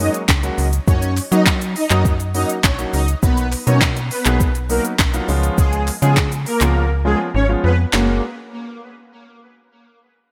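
A soft, airy supersaw melody opens this upbeat, summery dance-pop cut together with a concert grand piano and a snappy FM bass, all three breathing with sidechain pumping. The supersaw has a smooth, detuned unison sheen with a subtle noise layer, ensemble chorus and delay. The piano carries the accompaniment with an intimate tone, audible action noise and long sustain. Up front, the bass has a metallic, slap-like attack that decays into a mellow body. An electronic, produced R&B drum kit with a soft kick, sharp snare, smooth hats, shaker and handclaps arrives at 0.1 seconds, treated with gated reverb, while a very quiet, close and dry group handclap sits underneath. The drums fall silent from 6.8 to 7.9 seconds, and the chords return to their opening harmony as the excerpt moves into a new section, all framed by a bright 1980s-style digital production and light ambience.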